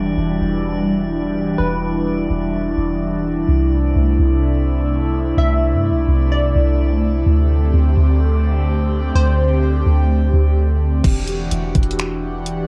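Hazy and spacious, this atmospheric cloud-rap excerpt at 127 BPM in a half-time 4/4 feel in E minor sets an airy, breathy pad with chorus, phaser, sidechain pumping and cassette tape over a soft, round 808-style bass, with a calm drifting glass-harmonics texture in its own reverb, a crystalline wavetable pluck with ring modulation and tape echo at 1.6 and 5.4 seconds, and a trap kit of knocking kick, bright hats, finger snaps and crash entering only at 11.0 seconds, all over Em9, C69 and D7sus4 with a filter sweep and the light reverb of a home cassette recording.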